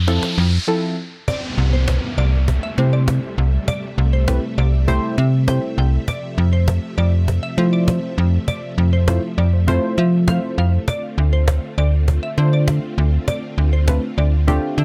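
Dry and gritty, this summery, euphoric dance-pop fragment opens on a short build-up of electronic riser-and-downlifter effects, a cajon fill and a break before the drop at 1.3 s, where a glassy, crystalline wavetable pluck melody with chorus and analog delay and warbling, vintage string-machine violas join the snappy, metallic slap-like FM bass, the mellow, round analog keys and the woody, up-front cajon with its faint snares.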